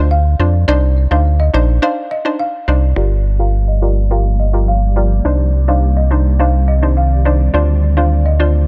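A round, deep analog bass sits up front in this sultry, bouncy dancehall excerpt at 105 BPM in G minor, anchoring chords that move from Dm7 through Cmadd9 to Gm7. A hollow, detuned square pluck with chorus and a low-pass filter plays accompaniment, while a woody, rustic marimba struck with medium hard mallets carries a high melody through digital delay. At 3.6 seconds an ethereal, airy pad enters with sustained chords, washed in ensemble chorus, phaser and reverb, rounding out a dark, warm, fairly dry mix.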